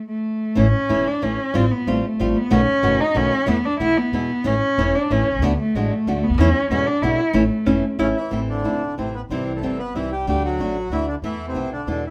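A sultry, tense tango excerpt in 3/4 at 186 BPM, played with a rubato feel in A major before turning to A minor at 8.3 s. A bowed cello opens alone, expressive and up front, with vibrato, portamento and a smooth top, and carries the first half as a second line. Fingerpicked flamenco guitar with fresh strings and a woody pizzicato upright bass join at 0.6 s and support the harmony through chords such as Fadd9/A, B7 and Esus4. A dark, clean hollow-body electric guitar adds a brief picked phrase at 7.7 s, shortly before the reedy bandoneon takes over the melody at 8.0 s, its tone boxy as if in a small room. The minor section moves through Am, C, D and Esus4 under light reverb, and the piece is cut from a longer performance.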